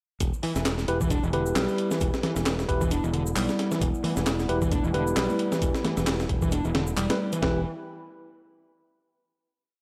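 A sampler-style breakbeat kit sits up front with a thumpy kick, high-tuned snare and hi-hat in a gritty, compressed looped break with edits, joined by an electronic shaker and handclaps layered over it, while a bright, growly fingered electric bass plays a dotted-rhythm line in E minor at 133 BPM with a 16th-note swing. A fuzz-drenched picked bass repeats a 16-step sequence through tube saturation and analog delay, a clean tine electric piano adds sparse echoing stabs, and a dark, detuned analog pad with lush chorus and sidechain pumping holds sustained chords in the background. Soft, ringing congas slip in very quietly at 4.0 seconds, and the raw, dry breaks track resolves onto a final chord at 7.4 seconds.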